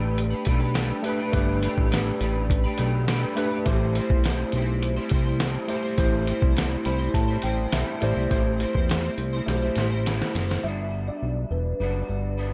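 Laid-back and sunny, this short piece of indie and bedroom pop moves at 103 BPM in a straight 4/4, cut from a longer piece and wrapped in a dark, warm production with light reverb. A twangy, slightly broken-up electric guitar through a small old amp picks out the accompaniment from the start, its tone shimmering with analog chorus and a warbly pitch drift, while a worn, slightly out-of-tune tine electric piano adds overdriven, cassette-tinged accompaniment and a fill from 6.6 to 8.3 seconds. Underneath, a fat analog bass sits up front, thick and saturated with a sustained, mellow body, alongside a muffled, pitched-down sampler-style drum kit with a thumpy kick, a medium-tuned snare and hi-hat, which closes its part with a fill before stopping at 10.6 seconds. The harmony drifts from Gadd9 to Am7 and settles on Gmaj7, and at that last change a woody, airy kalimba enters with ringing thumb-plucked notes, treated with chorus and tape echo. 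The guitar and bass carry on to the end of the cut.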